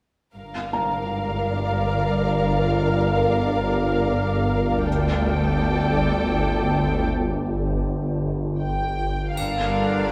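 An uneasy, eerie stretch of suspense film score in free time and G minor opens at 0.4 s on con sordino strings: veiled violins hold a second line up front while dark cellos and double basses bow the bass in the background, soon joined by a soft, felt-muted upright piano, a flickering grainy texture with its own reverb, and a tense, swarming, detuned drone that sits prominently in the mix. The harmony moves from Gm7 to Dsus4/G and back, and near the close a lush violin melody enters at 8.6 s, followed by rich violas and a bright triangle at 9.4 s. A wet recital-hall reverb surrounds the whole, deepening the haunted atmosphere.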